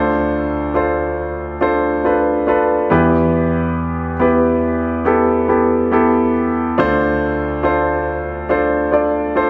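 Pop at a slow 70 BPM in D dorian, this heartbroken, emotional fragment features a solo concert grand piano, brilliant and up front with deep bass and audible action noise, moving from Dm7 to Em at 2.9 seconds and back to Dm7 at 6.8 seconds within a wet recital hall reverb.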